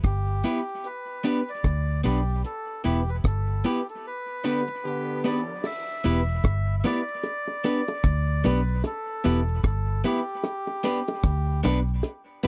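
A laid-back, swung roots reggae groove rides on a dark, up-front kit of tight kick, hi-hat, rim click and crash, anchored by a round, punchy, foam-muted electric bass, with a band accent from 2.4 to 5.6 seconds. A reedy, breathy melodica carries the meditative melody with dub echo, while a slightly broken-up electric guitar and a hollow, chorused organ stab fill the accompaniment, and a clear, tight horn section adds a brief second line with dub echo from 4.4 seconds. High-tuned, hard-hand bongos join at 5.6 seconds, all captured in a dry, close 1970s-style studio sound in this piece cut from a longer track.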